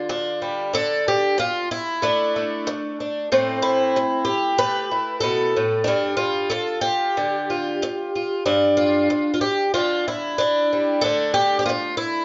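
Dark, warm production sets a picked twelve-string acoustic guitar up front in a moderate recital-hall reverb, its boxy body and shimmering, octave-doubled strings ringing through the room with the occasional finger squeak. This gentle, peaceful folk excerpt has the guitar playing solo across a straight 4/4, moving through G5, Dsus2 and Am7 before returning to G5. The opening passage repeats at 8.5 seconds, and Dsus2 comes back at 11.0 seconds before the cut at 12.2 seconds.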